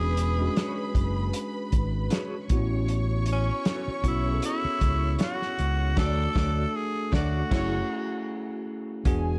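The recording has a dark, warm production with light reverb and small room ambience, in a short cut from a longer, lush 1970s-style soul piece. A raspy, gritty tenor saxophone carries the melody with vibrato and tape echo. Beneath it, a bell-like tine electric piano plays clean accompaniment, while a studio string section bows an intimate, soft-attacked second line sul tasto. An overdriven fingered electric bass sits up front, round and amped, beside a tight soul drum kit with saturated, rolled-off cymbals, a medium-tuned snare and a pumping room sound. From 0.6 seconds an electric guitar through a small old amp adds a lo-fi, slightly broken-up picked riff with tremolo, tucked in the background until 7.8 seconds, and the band plays an accent from 6.0 seconds, keeping the mood silky and smooth.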